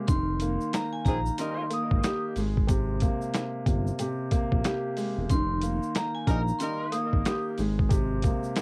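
A dark concert grand piano opens this short, gritty boom-bap hip-hop cut, laying down mellow chords with a deep low end that sit up front under a veil of cassette tape coloring and filtering. Almost at once a compressed, pitched-down sampler drum kit arrives with a thumpy kick, a high-tuned snare and hi-hat, swung on the sixteenths and coated in 12-bit grit, while a smooth synth bass hums beneath with a sawtooth-and-triangle tone, ring modulation and vibrato. Above it, a vibraphone struck with medium hard mallets carries the melody in a high, metallic register, its ringing bars shimmering with a slow motor vibrato until about 7.4 seconds. A jazz-style horn section punctuates the groove with brief stabs around 1.1 and 6.3 seconds, its smooth top trailed by analog delay. Far in the background a grainy tube shaker adds a faint acoustic texture, and the whole piece carries the light reverb and shadowy, lo-fi feel of a home recording on cassette.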